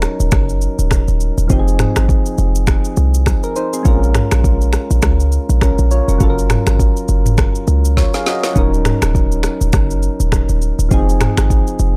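A swung 4/4 groove at 102 BPM drives this smooth, sultry afrobeats piece in Eb dorian, cut from a longer piece: an up-front electronic drum kit with a deep kick, woody snare, rim clicks, finger snaps, shaker and toms (with a fill from 8.0 to 8.6 seconds) sits over a boomy, sine-toned 808-style bass, while soft, round electric-piano-like synth keys with chorus and tremolo move through Ebm7, Fm7, Bbm7 and Gbmaj7, all captured in a dry, gritty recording with transformer saturation.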